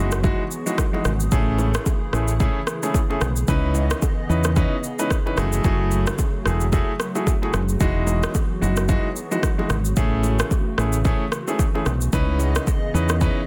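Joyful and sunny, this swung afrobeats clip from a longer piece puts a round, punchy fingered electric bass and a produced afro-pop kit with a deep kick, rim click and shaker up front, while an intimate grand piano with audible action noise carries the chords, a hollow, flute-like pad with ensemble chorus sustains in the background, and very quiet, ringing congas and bongos played with soft hands add color to a dry, densely limited modern mix.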